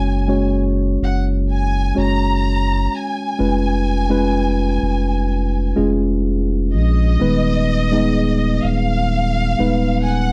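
A tender, emotional pop ballad in a straight 4/4, this short excerpt is cut from a longer piece and runs just over 10 seconds. A lush, expressive violin section carries the melody between D#5 and A#5, its bowed ensemble tone rich with vibrato yet set back at a distance and touched by a slapback echo. Underneath, a worn, slightly out-of-tune tine electric piano plays the accompaniment with a mellow, clean and direct sound placed up front. A deep, thick, saturated sub bass with a fast attack and long sustain anchors the low end, sitting forward in the mix. The harmony moves from F#sus2 to C#7/E# at 3.4 seconds and on to G#m/D# at 7.2 seconds, all captured in a dry, close 1970s-style studio sound with little reverb.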